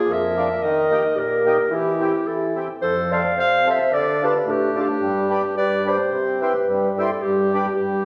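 Moving in a bouncy 2/4 at 109 BPM with a light swing and some rubato, this jolly fragment of alpine dance band folk in C major sets two clarinets over accordion in a resonant church or concert hall. A dark, roomy clarinet carries the melody up front in a classical style, while a second clarinet with a smooth top plays a supporting line until about 7.0 seconds. Beneath them a reedy, full accordion with an airy, mellow tone-chamber sound provides the accompaniment, moving from Bb7 through Eb, C/E, F, Dm and G to C before turning to G.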